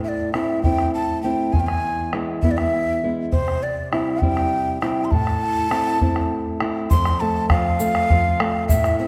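Andean folk for a small ensemble, this short passage cut from a longer piece feels wistful yet festive, with a straight six-eight pulse. A breathy large quena carries the melody up front, its woody, end-blown tone straight and crisp, with a distinct chiff on each attack. A fingerpicked nylon-string guitar sits close by in accompaniment, its fresh strings giving a small, warm, acoustic sound. The bombo enters at 0.3 seconds with a round thump that carries a live-room air, and an egg shaker joins in the background at 6.9 seconds with a grainy, bright rustle just as the music moves into a new section and the harmony shifts to F. A wet recital-hall reverb surrounds the ensemble as the chords pass through Am, E and C before that change.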